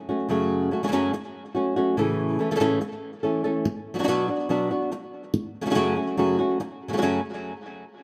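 A fingerpicked acoustic flamenco guitar opens this mournful, intense flamenco passage at 143 BPM in F# minor, tuned to A4 = 438 Hz, playing alone from 0.1 to 7.2 seconds across a span from F#2 to A4. The guitar sits up front with a warm tone and a touch of tape echo, moving through F#m, A and Bm before returning to F#m. A moderate studio reverb lends the sense of hearing it from further back in the room, and the passage is cut from a longer piece.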